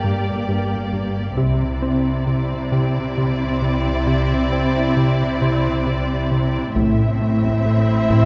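A fat, saturated analog bass carries a sustained riff in this eerie, uneasy suspense cue in 3/4 at 67 BPM, its detuned sawtooth tone evolving beneath a bed of muted, con sordino strings: veiled violins on the melody and a second line, background violas, and distant cellos and double basses, all bowed with vibrato. A background taiko ensemble enters at 1.4 s with heavy sticks as the harmony moves from Gm to Cadd9, settling on Am at 6.8 s. The short cut from a longer piece sits in a wet recital hall reverb with a dark, rolled-off top end.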